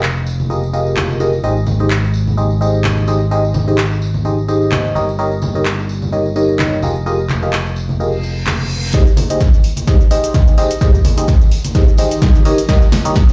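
Piano house at 128 BPM in Ab major with a feel-good, uplifting mood, built on a barking, biting FM electric piano riff with phaser, delay, filtering and sidechain pumping, a growly overdriven fingered bass that stops at 8.9 s, a punchy analog drum machine of handclaps, hi-hat, shaker and snare, ringing distant tambourine and congas, and a quiet reverse cymbal and riser from 8.2 s leading into a build-up where an up-front electronic kick enters at 8.9 s alongside a drum fill and a filter sweep on the piano, all over chords moving from Fm11 through Abmaj7 to Eb7, heard in a bare room on a big sound system.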